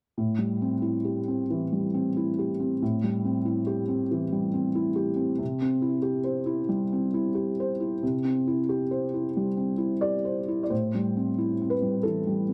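Neoclassical minimalist piano in a melancholic, wistful mood, this short fragment cut from a longer piece features a solo felt-muted upright piano, soft, dark and boxy, sitting up front in a dry, intimate space with a rubato feel as its chords move from Am7 to C and back to Am7 at 10.7 seconds.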